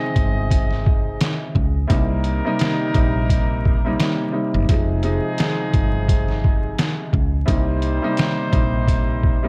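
Vinyl crackle and a light reverb give this short cut from a longer piece a dusty, lived-in sound. It is a dark, gritty boom-bap hip-hop groove with a gentle swing on the sixteenths. From the opening second, an upright piano with a woody, smooth, vintage tone plays the accompaniment, softened by cassette tape character and filtering. Punchy horn stabs with a light vibrato also sound from the start, their filtered tone trailing off through tape echo. At 0.2 seconds a round, hollow-sounding fretless electric bass comes in low and direct, alongside a sampler-style drum kit that sits up front. The kit is compressed, pitched down and muffled, with a thumpy kick, a medium-tuned snare and hi-hat, while the harmony moves between Fm7 and Cm7.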